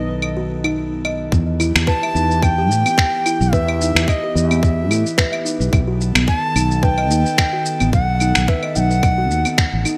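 Organic downtempo at 109 BPM in E harmonic minor with a meditative, hypnotic pull, this 10-second excerpt sets a bright, reedy bass bansuri melody with digital delay over a buzzing, woody kalimba arpeggio, an airy, breathy pad with chorus and sidechain pumping in the background, a dark, round fretless electric bass with lush chorus, and gritty, sampler-style claves, shaker and finger snaps in gated reverb, before an overdriven electronic kick enters at 1.3 seconds as the harmony moves from B7 to Em, all wrapped in bright 1980s-style digital production.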